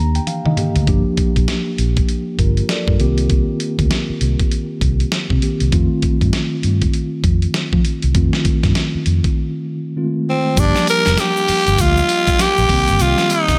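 A growling tenor saxophone takes the solo at 10.3 seconds, raspy and breathy with a light vibrato, sitting up front over this punchy, confident new jack swing groove in G minor at 99 BPM with a swung sixteenth-note feel. Before it arrives, a mellow tine electric piano, clean and heard through its built-in speakers, carries the accompaniment from the start, opening with a short fill over chords moving from Ebmaj7 through Gm7 and Cm7 to F7. A sampler-style drum kit with a compressed, dusty grit joins at 0.2 seconds, pairing a thumpy kick and medium-tuned snare with hi-hat, tambourine and toms, and it plays a fill before settling in. Underneath, a vintage fingered electric bass gives a dark, round, foam-muted low end. After a break near the ten-second mark, a grainy egg shaker enters at 10.6 seconds, distant in a large room in the background, as the harmony returns to Gm7 and Cm7 under the sax. 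Light reverb wraps this R&B fragment, which is cut from a longer piece.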